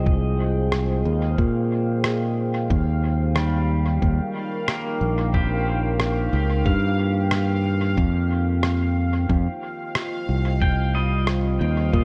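A loping 4/4 groove with a lazy swing on the sixteenths sets this hazy ambient dub fragment in motion, cut from a longer piece. A sampler-style electronic kick, pitched down, muffled and thumpy, anchors the beat from 0.1 seconds, and a compressed, equally muffled rim click joins at 0.7 seconds, trailing a dub echo into the studio reverb. Up front sits a bright, direct fingered electric bass, the most prominent voice, moving through a low register beneath a deep, dark pad of detuned sawtooth unison layered with a sine sub octave, its slow attack and long release blurred by chorus and reverb. A twangy, clean pedal steel guitar played with fingerpicks drifts through arpeggios with volume swells and slide, dissolving into a diffuse ambient delay. From 0.8 seconds a faint, resonant bubbling texture of random filter steps hovers on a high F, while the harmony shifts from Fm9 to Eb9 and settles on Fsus2 for a deep, moody, suspended feel.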